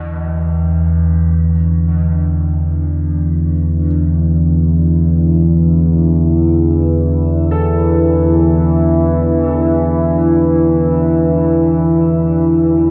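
An up-front analog drone, resonant and evolving with sawtooth and pulse-wave tones under chorus, anchors this cavernous, ominous dark ambient fragment in free time, resting on a single E5 chord. Above it, a deep, detuned ambient pad holds sustained chords through chorus and shimmer reverb as it fades out over the full 12.9 seconds. Meanwhile a clear, intimate grand piano, its action noise audible, fades in with arpeggios trailed by diffuse delay. The whole sits in a cathedral-sized reverb and the wavering pitch drift of worn cassette tape.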